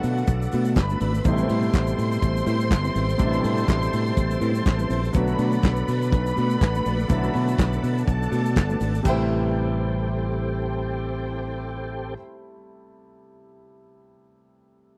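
Up front, a tight soul drum kit with a mid-forward, medium-tuned snare, a tight kick, hi-hat, handclaps and crash cymbal drives this disco excerpt at 123 BPM in 4/4 with a 16th-note swing, playing until 9.2 seconds. A punchy fingered electric bass sits close beside it in A dorian, while a clear, intimate grand piano with audible action noise carries the accompaniment and lasts the longest, to 15.0 seconds. Dark, woody strings with lush vibrato add a second line above, and a full tonewheel organ holds sustained chords through chorus vibrato and a slow rotary speaker. A very quiet, clean, fingered electric guitar and a grainy tube shaker in the background fill out the groove as the harmony moves between Bm7 and Am9. The mood is danceable and driving, captured dry and close in a small room with a 1970s studio character.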